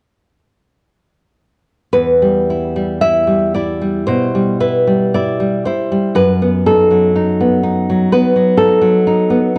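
Wistful and passionate, this short cut from a longer romantic piece for solo classical guitar moves freely with rubato at roughly 54-64 BPM in 4/4, in E minor. A fingerpicked nylon-string guitar sits up front with a warm, acoustic tone, entering at 1.9 s and spanning E2 to E5 as it moves from Em to B7/F# at 6.2 s before stopping at 9.6 s. A moderate recital hall reverb surrounds it, while worn old cassette tape adds a warbling pitch drift.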